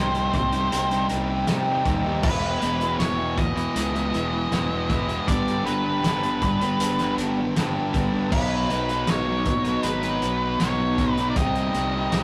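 Brooding and cathartic, this short cut from a longer piece of quiet-loud alternative rock moves at 79 BPM in a straight 4/4, its chords shifting from Cm through E, G and B before landing back on Cm. An octave-fuzz lead guitar carries the melody in a dark, distorted tone, sitting high between B4 and D#5. Beneath it, two thick fuzz guitars play the riff across a low-to-middle range, one bright and the other warm. A fuzz fingered electric bass adds a growly, punchy, overdriven bottom end, while a loose indie drum kit joins at 0.1 s with a fat snare, punchy kick, hi-hat and crash, its gritty, saturated sound placed up front with a rolled-off top. The whole take has the rough feel of a rehearsal room, with tube saturation and a moderate studio reverb giving it a raw edge.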